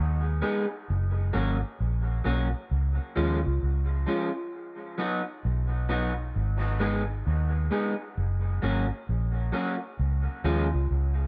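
A muted, fingered electric bass sits up front from the first moment, its tone dark, round and punchy with a foam-damped, amped thud that anchors this slow, swung dub reggae fragment. At 0.4 seconds an electric guitar joins through a small old amp, picked and slightly broken-up, its shadowy voice also placed close and trailed by dub echo. The two parts move through a looping cycle of G#m, F#, C# and B, and the guitar sits in a higher register above the bass. Light reverb and an echo-soaked mix give the sound a spacious, hypnotic atmosphere. The fragment, lifted from a longer piece, runs to 11.3 seconds.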